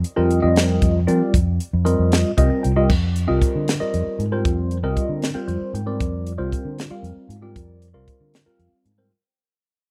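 A dry, close 1970s-style studio sound in a small room frames this nocturnal, intense electric jazz fusion fragment in 6/8 at 77 BPM in F dorian, where a dark, round, punchy fingered electric bass and a crisp, polished drum kit with dark cymbals, a high-tuned snare and a punchy kick open together, a worn, slightly out-of-tune tine electric piano with overdrive and phaser joins almost at once and adds fills at 2.1 and 5.2 seconds, and the harmony moves from F5 through Fsus2 to Fm11 as the recording fades out from 2.9 seconds.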